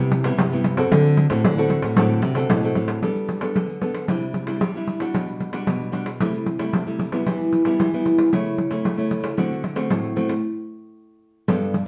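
A pair of small-bodied nylon-string guitars opens this joyful, playful samba and choro excerpt, one fingerpicking a low bass line from G2 to D3 and the other fingerpicking chords from Cmaj7 to D7, with a squeak of fingers on the strings. A jingly pandeiro joins almost at once, sitting close, dry and up front in a straight 4/4 feel. The bass guitar drops away at 3.0 seconds as the harmony moves through Gadd9, Cadd9, Gmaj7/B, Am7/C, Em and A/C# before returning to D7, leaving the warm accompanying guitar and the pandeiro to carry the music. A stop arrives at 10.4 seconds, and the bass guitar sounds briefly once more at 11.5 seconds before the passage is cut off. The group plays live in one studio room with a wet reverb around it.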